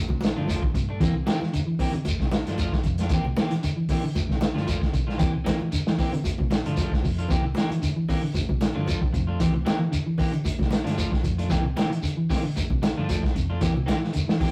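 A driving, hypnotic afrobeat groove in C mixolydian at 114 BPM with a light 16th-note swing, cut from a longer piece, opens on a round, dark fingered bass beneath a muffled, up-front vintage kit with tight kick and medium-tuned snare, ringing close congas, grainy compressed shekere, dark clean guitar arpeggios in the background and slightly broken-up picked guitar stabs, all cycling between Bbmaj7 and C7 in a rough rehearsal-room recording with saturation and moderate studio reverb.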